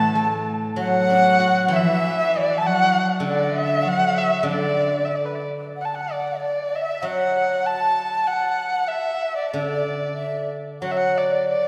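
A dark, woody erhu with vibrato and portamento carries the melody up front over a silvery, ringing steel-string zither played with fingerpicks and a rich, gut-string cello second line that stops at 5.1 s, while a breathy bamboo large dizi with a buzzing membrane adds an unsteady second line in the background from 0.1 s, all of it set in a long church reverb that gives this festive, pastoral Chinese traditional chamber excerpt in rubato 2/4 its spacious sound.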